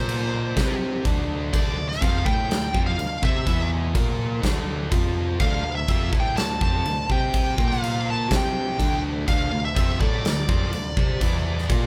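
Hard rock in D minor at 124 BPM, aggressive and menacing, where a bluesy, distorted lead guitar sits up front over a dark, double-tracked overdriven guitar riff, a bright, growly picked bass and a huge arena drum kit with a punchy kick, crash cymbal and medium-tuned snare, captured as a band playing live in one room with light reverb in this short cut from a longer piece.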